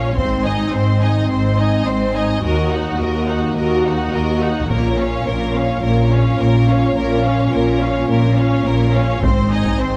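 Heroic and relentless, this cinematic, epic orchestral film score passage in Bb minor moves at 106 BPM in a straight 4/4, building throughout, and it is cut from a longer piece. A lush, expressive violin section carries the melody with vibrato while a second, richer and more intense violin line with a smooth top sits beneath it, supported by violas gliding with portamento, mellow, distant French horns holding sustained chords, background cellos, and a soft-attacked, distant chamber double bass section anchoring the low end. Taiko drums struck with hard sticks enter in bursts at 0.2, 4.7 and 9.2 seconds, all set in a moderate concert hall reverb captured with close, detailed microphones.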